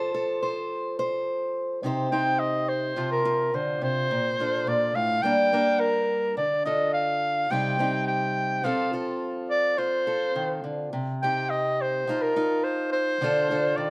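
Acoustic folk for a duo or small band, this short excerpt moves at 106 BPM in a straight 4/4, with an intimate, reflective mood. A fingerpicked acoustic archtop guitar opens alone and carries the accompaniment throughout, its fresh strings and warm tone supporting chords that move from F through Cm, Bbmaj7, Gm and Dm. At 2.1 seconds a warm soprano saxophone enters with the melody, played in a classical style with vibrato and a smooth top, sitting as a solo voice in the upper register. Both instruments are up front, and the saxophone sits a little louder than the guitar. The pair plays live in one room, and a moderate stone-room reverb lends a natural sense of space before the passage closes on a Dm chord.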